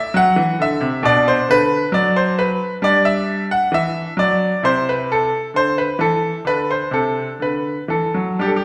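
Classical, baroque-style suite movement for solo grand piano, flowing and radiant at a rubato 66 BPM in 4/4. The brilliant, up-front concert grand spans B2 to F#5 with a deep bass, playing throughout the 8.6-second fragment as the harmony moves from F#7(b5) through Bm, Em7/G, Cmaj13 and Amadd11 to D. A wet recital hall reverb with a 1.4-second decay surrounds the instrument.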